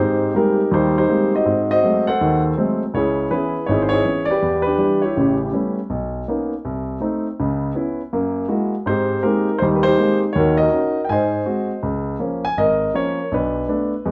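Solo jazz at a relaxed, playful 162 BPM in swung 4/4, as a warm, up-front grand piano ranges from Ab1 to Ab5 through a wet studio reverb in a live-room sound, moving from Abmaj9 through turns like Em7 to A9 and Bmaj9 before landing on Db6 at 11.8 seconds in this brief 14.1-second fragment cut from a longer piece.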